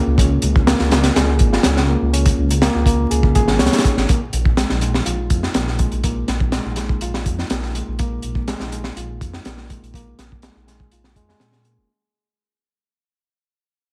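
A mellow, reedy electric piano riff opens this energetic, funky 123 BPM breakbeat excerpt, its clean tone roughened by tube saturation, 12-bit sampler grit, a low-pass filter and digital delay, as a deep, rumbling detuned saw bass with a beating, sustained sawtooth edge and a crunchy, gritty, up-front drum kit with a tight kick, high-tuned snare, hi-hat and rolled-off top arrive within the first second, and the whole cut, which is a drop over Db until 4.1 seconds and then a fade-out over Bb7 (third omitted) until 11.9 seconds, sits in studio reverb beneath a layer of vinyl crackle.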